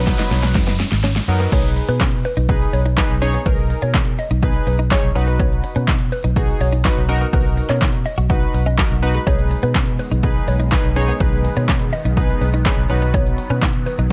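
A short build-up opens this upbeat, euphoric dance-pop excerpt at 124 BPM, with a background riser and a drum fill over airy, detuned analog keys, a clean, picked guitar riff recorded direct, and a round, foam-muted fingered bass. The drop lands at 1.5 seconds, when a woody, mallet-like FM pluck enters with a mellow melody coloured by chorus, phaser and dub echo. The deep house kit sits up front with a punchy kick, fat snare, claps, hi-hat, shaker and crash, all given an overdriven edge, while the dark bass pumps to the sidechain beside it. The vintage sawtooth keys warble with chorus, a filter sweep and sidechain pumping, and the compressed guitar stays in the background. At 9.3 seconds a softly evolving supersaw swell adds sustained, detuned chords with a moving notch as the harmony alternates between B and G#m/B. The production is dark and dry, with little reverb and a rolled-off top end.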